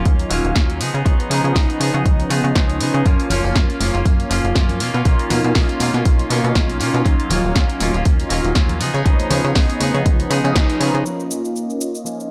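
Filtered disco house at 120 BPM with a nostalgic, groovy swing, built on Ebm9, Db9, Gbmaj7 and Bmaj9#11 chords. A punchy, up-front electronic kick and an overdriven analog drum machine of hi-hat, shaker and snare drive a plucky, tube-saturated sawtooth bass, while mellow, detuned synth brass with chorus and phaser and a twangy, clean direct-recorded guitar riff pump under the sidechain through a low-pass filter. Tambourine and congas join in the background at 3.1 seconds, a band accent lands at 10.6 seconds, and from 11.1 seconds a lush string machine slips in beneath a filter sweep on a Bbmadd11/F chord.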